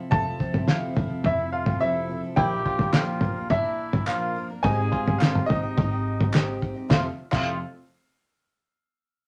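A muffled, lo-fi small-room drum kit with a fat snare and dark cymbals sits up front in this hopeful indie folk cut at 106 BPM, where a bright upright piano with audible action noise carries the melody over a picked dreadnought acoustic guitar with finger squeak, a very quiet grand piano and a woody pizzicato upright bass; a classical-style trumpet adds a second line from 1.2 s, twangy fingerpicked banjo arpeggios join at 2.4 s, and crisp handclaps arrive in the background at 2.9 s as the building arrangement moves through Fmaj7, Bb and Abmaj7.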